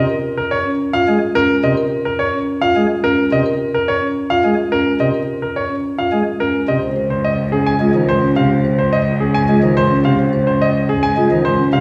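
A bright baby grand piano carries the melody up front, its polished, brilliant tone short in sustain and intimate enough that the action noise is audible. This is a hypnotic, meditative piece of minimalist classical pattern music in 3/4 at 107 BPM with a straight feel, beginning in Bb minor and moving to Db major at 6.8 seconds. Beneath the piano, a marimba played with soft mallets spins mellow, round arpeggios, while a chamber organ on its flute stops adds light accompaniment with a touch of chiff in the low register. At 6.8 seconds a single rich cello enters on a bowed bass note, smooth and even with vibrato, sitting up front in the mix. The whole ensemble is heard from further back in a wet recital hall, and the passage is cut from a longer piece.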